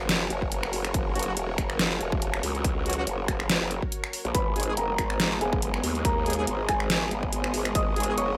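Chaotic and aggressive, this short cut of heavy wobble dubstep rides a swung, half-time groove. Up front, a growling, wobbling bass is saturated and bright with overdrive and chorus, and a dubstep drum kit of finger snaps, hi-hat and a deep, overdriven snare sits up front too, joined by a punchy electronic kick drum. In the background, a lush, detuned supersaw pad holds sustained chords with sidechain pumping. From 1.2 seconds, a clear, close-miked brass ensemble adds classical-style stabs through tape echo. At 4.3 seconds, as the harmony moves from F# to G# minor, a felt-muted upright piano enters with a mellow, intimate melody, its boxy tone and audible action noise also colored by tape echo. A light reverb places the whole mix in a modest space.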